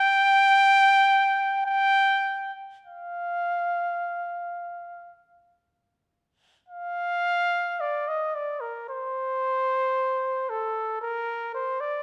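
Freely paced and rubato, the music drifts between 37 and 59 BPM within a loose 4/4, giving this classical piece for unaccompanied trumpet an expressive, unhurried feel. In F mixolydian, the mood is serene and nostalgic, like a quiet recollection taken from a longer work. The solo trumpet sits up front with a mellow tone, soft attacks and a light vibrato, singing its line between A4 and G5 in a classical style. A moderate recital hall reverb gives the notes a gentle halo that lingers after each phrase. The brief passage moves from its opening statement into a contrasting second idea at 6.7 seconds, closing at 12.0 seconds.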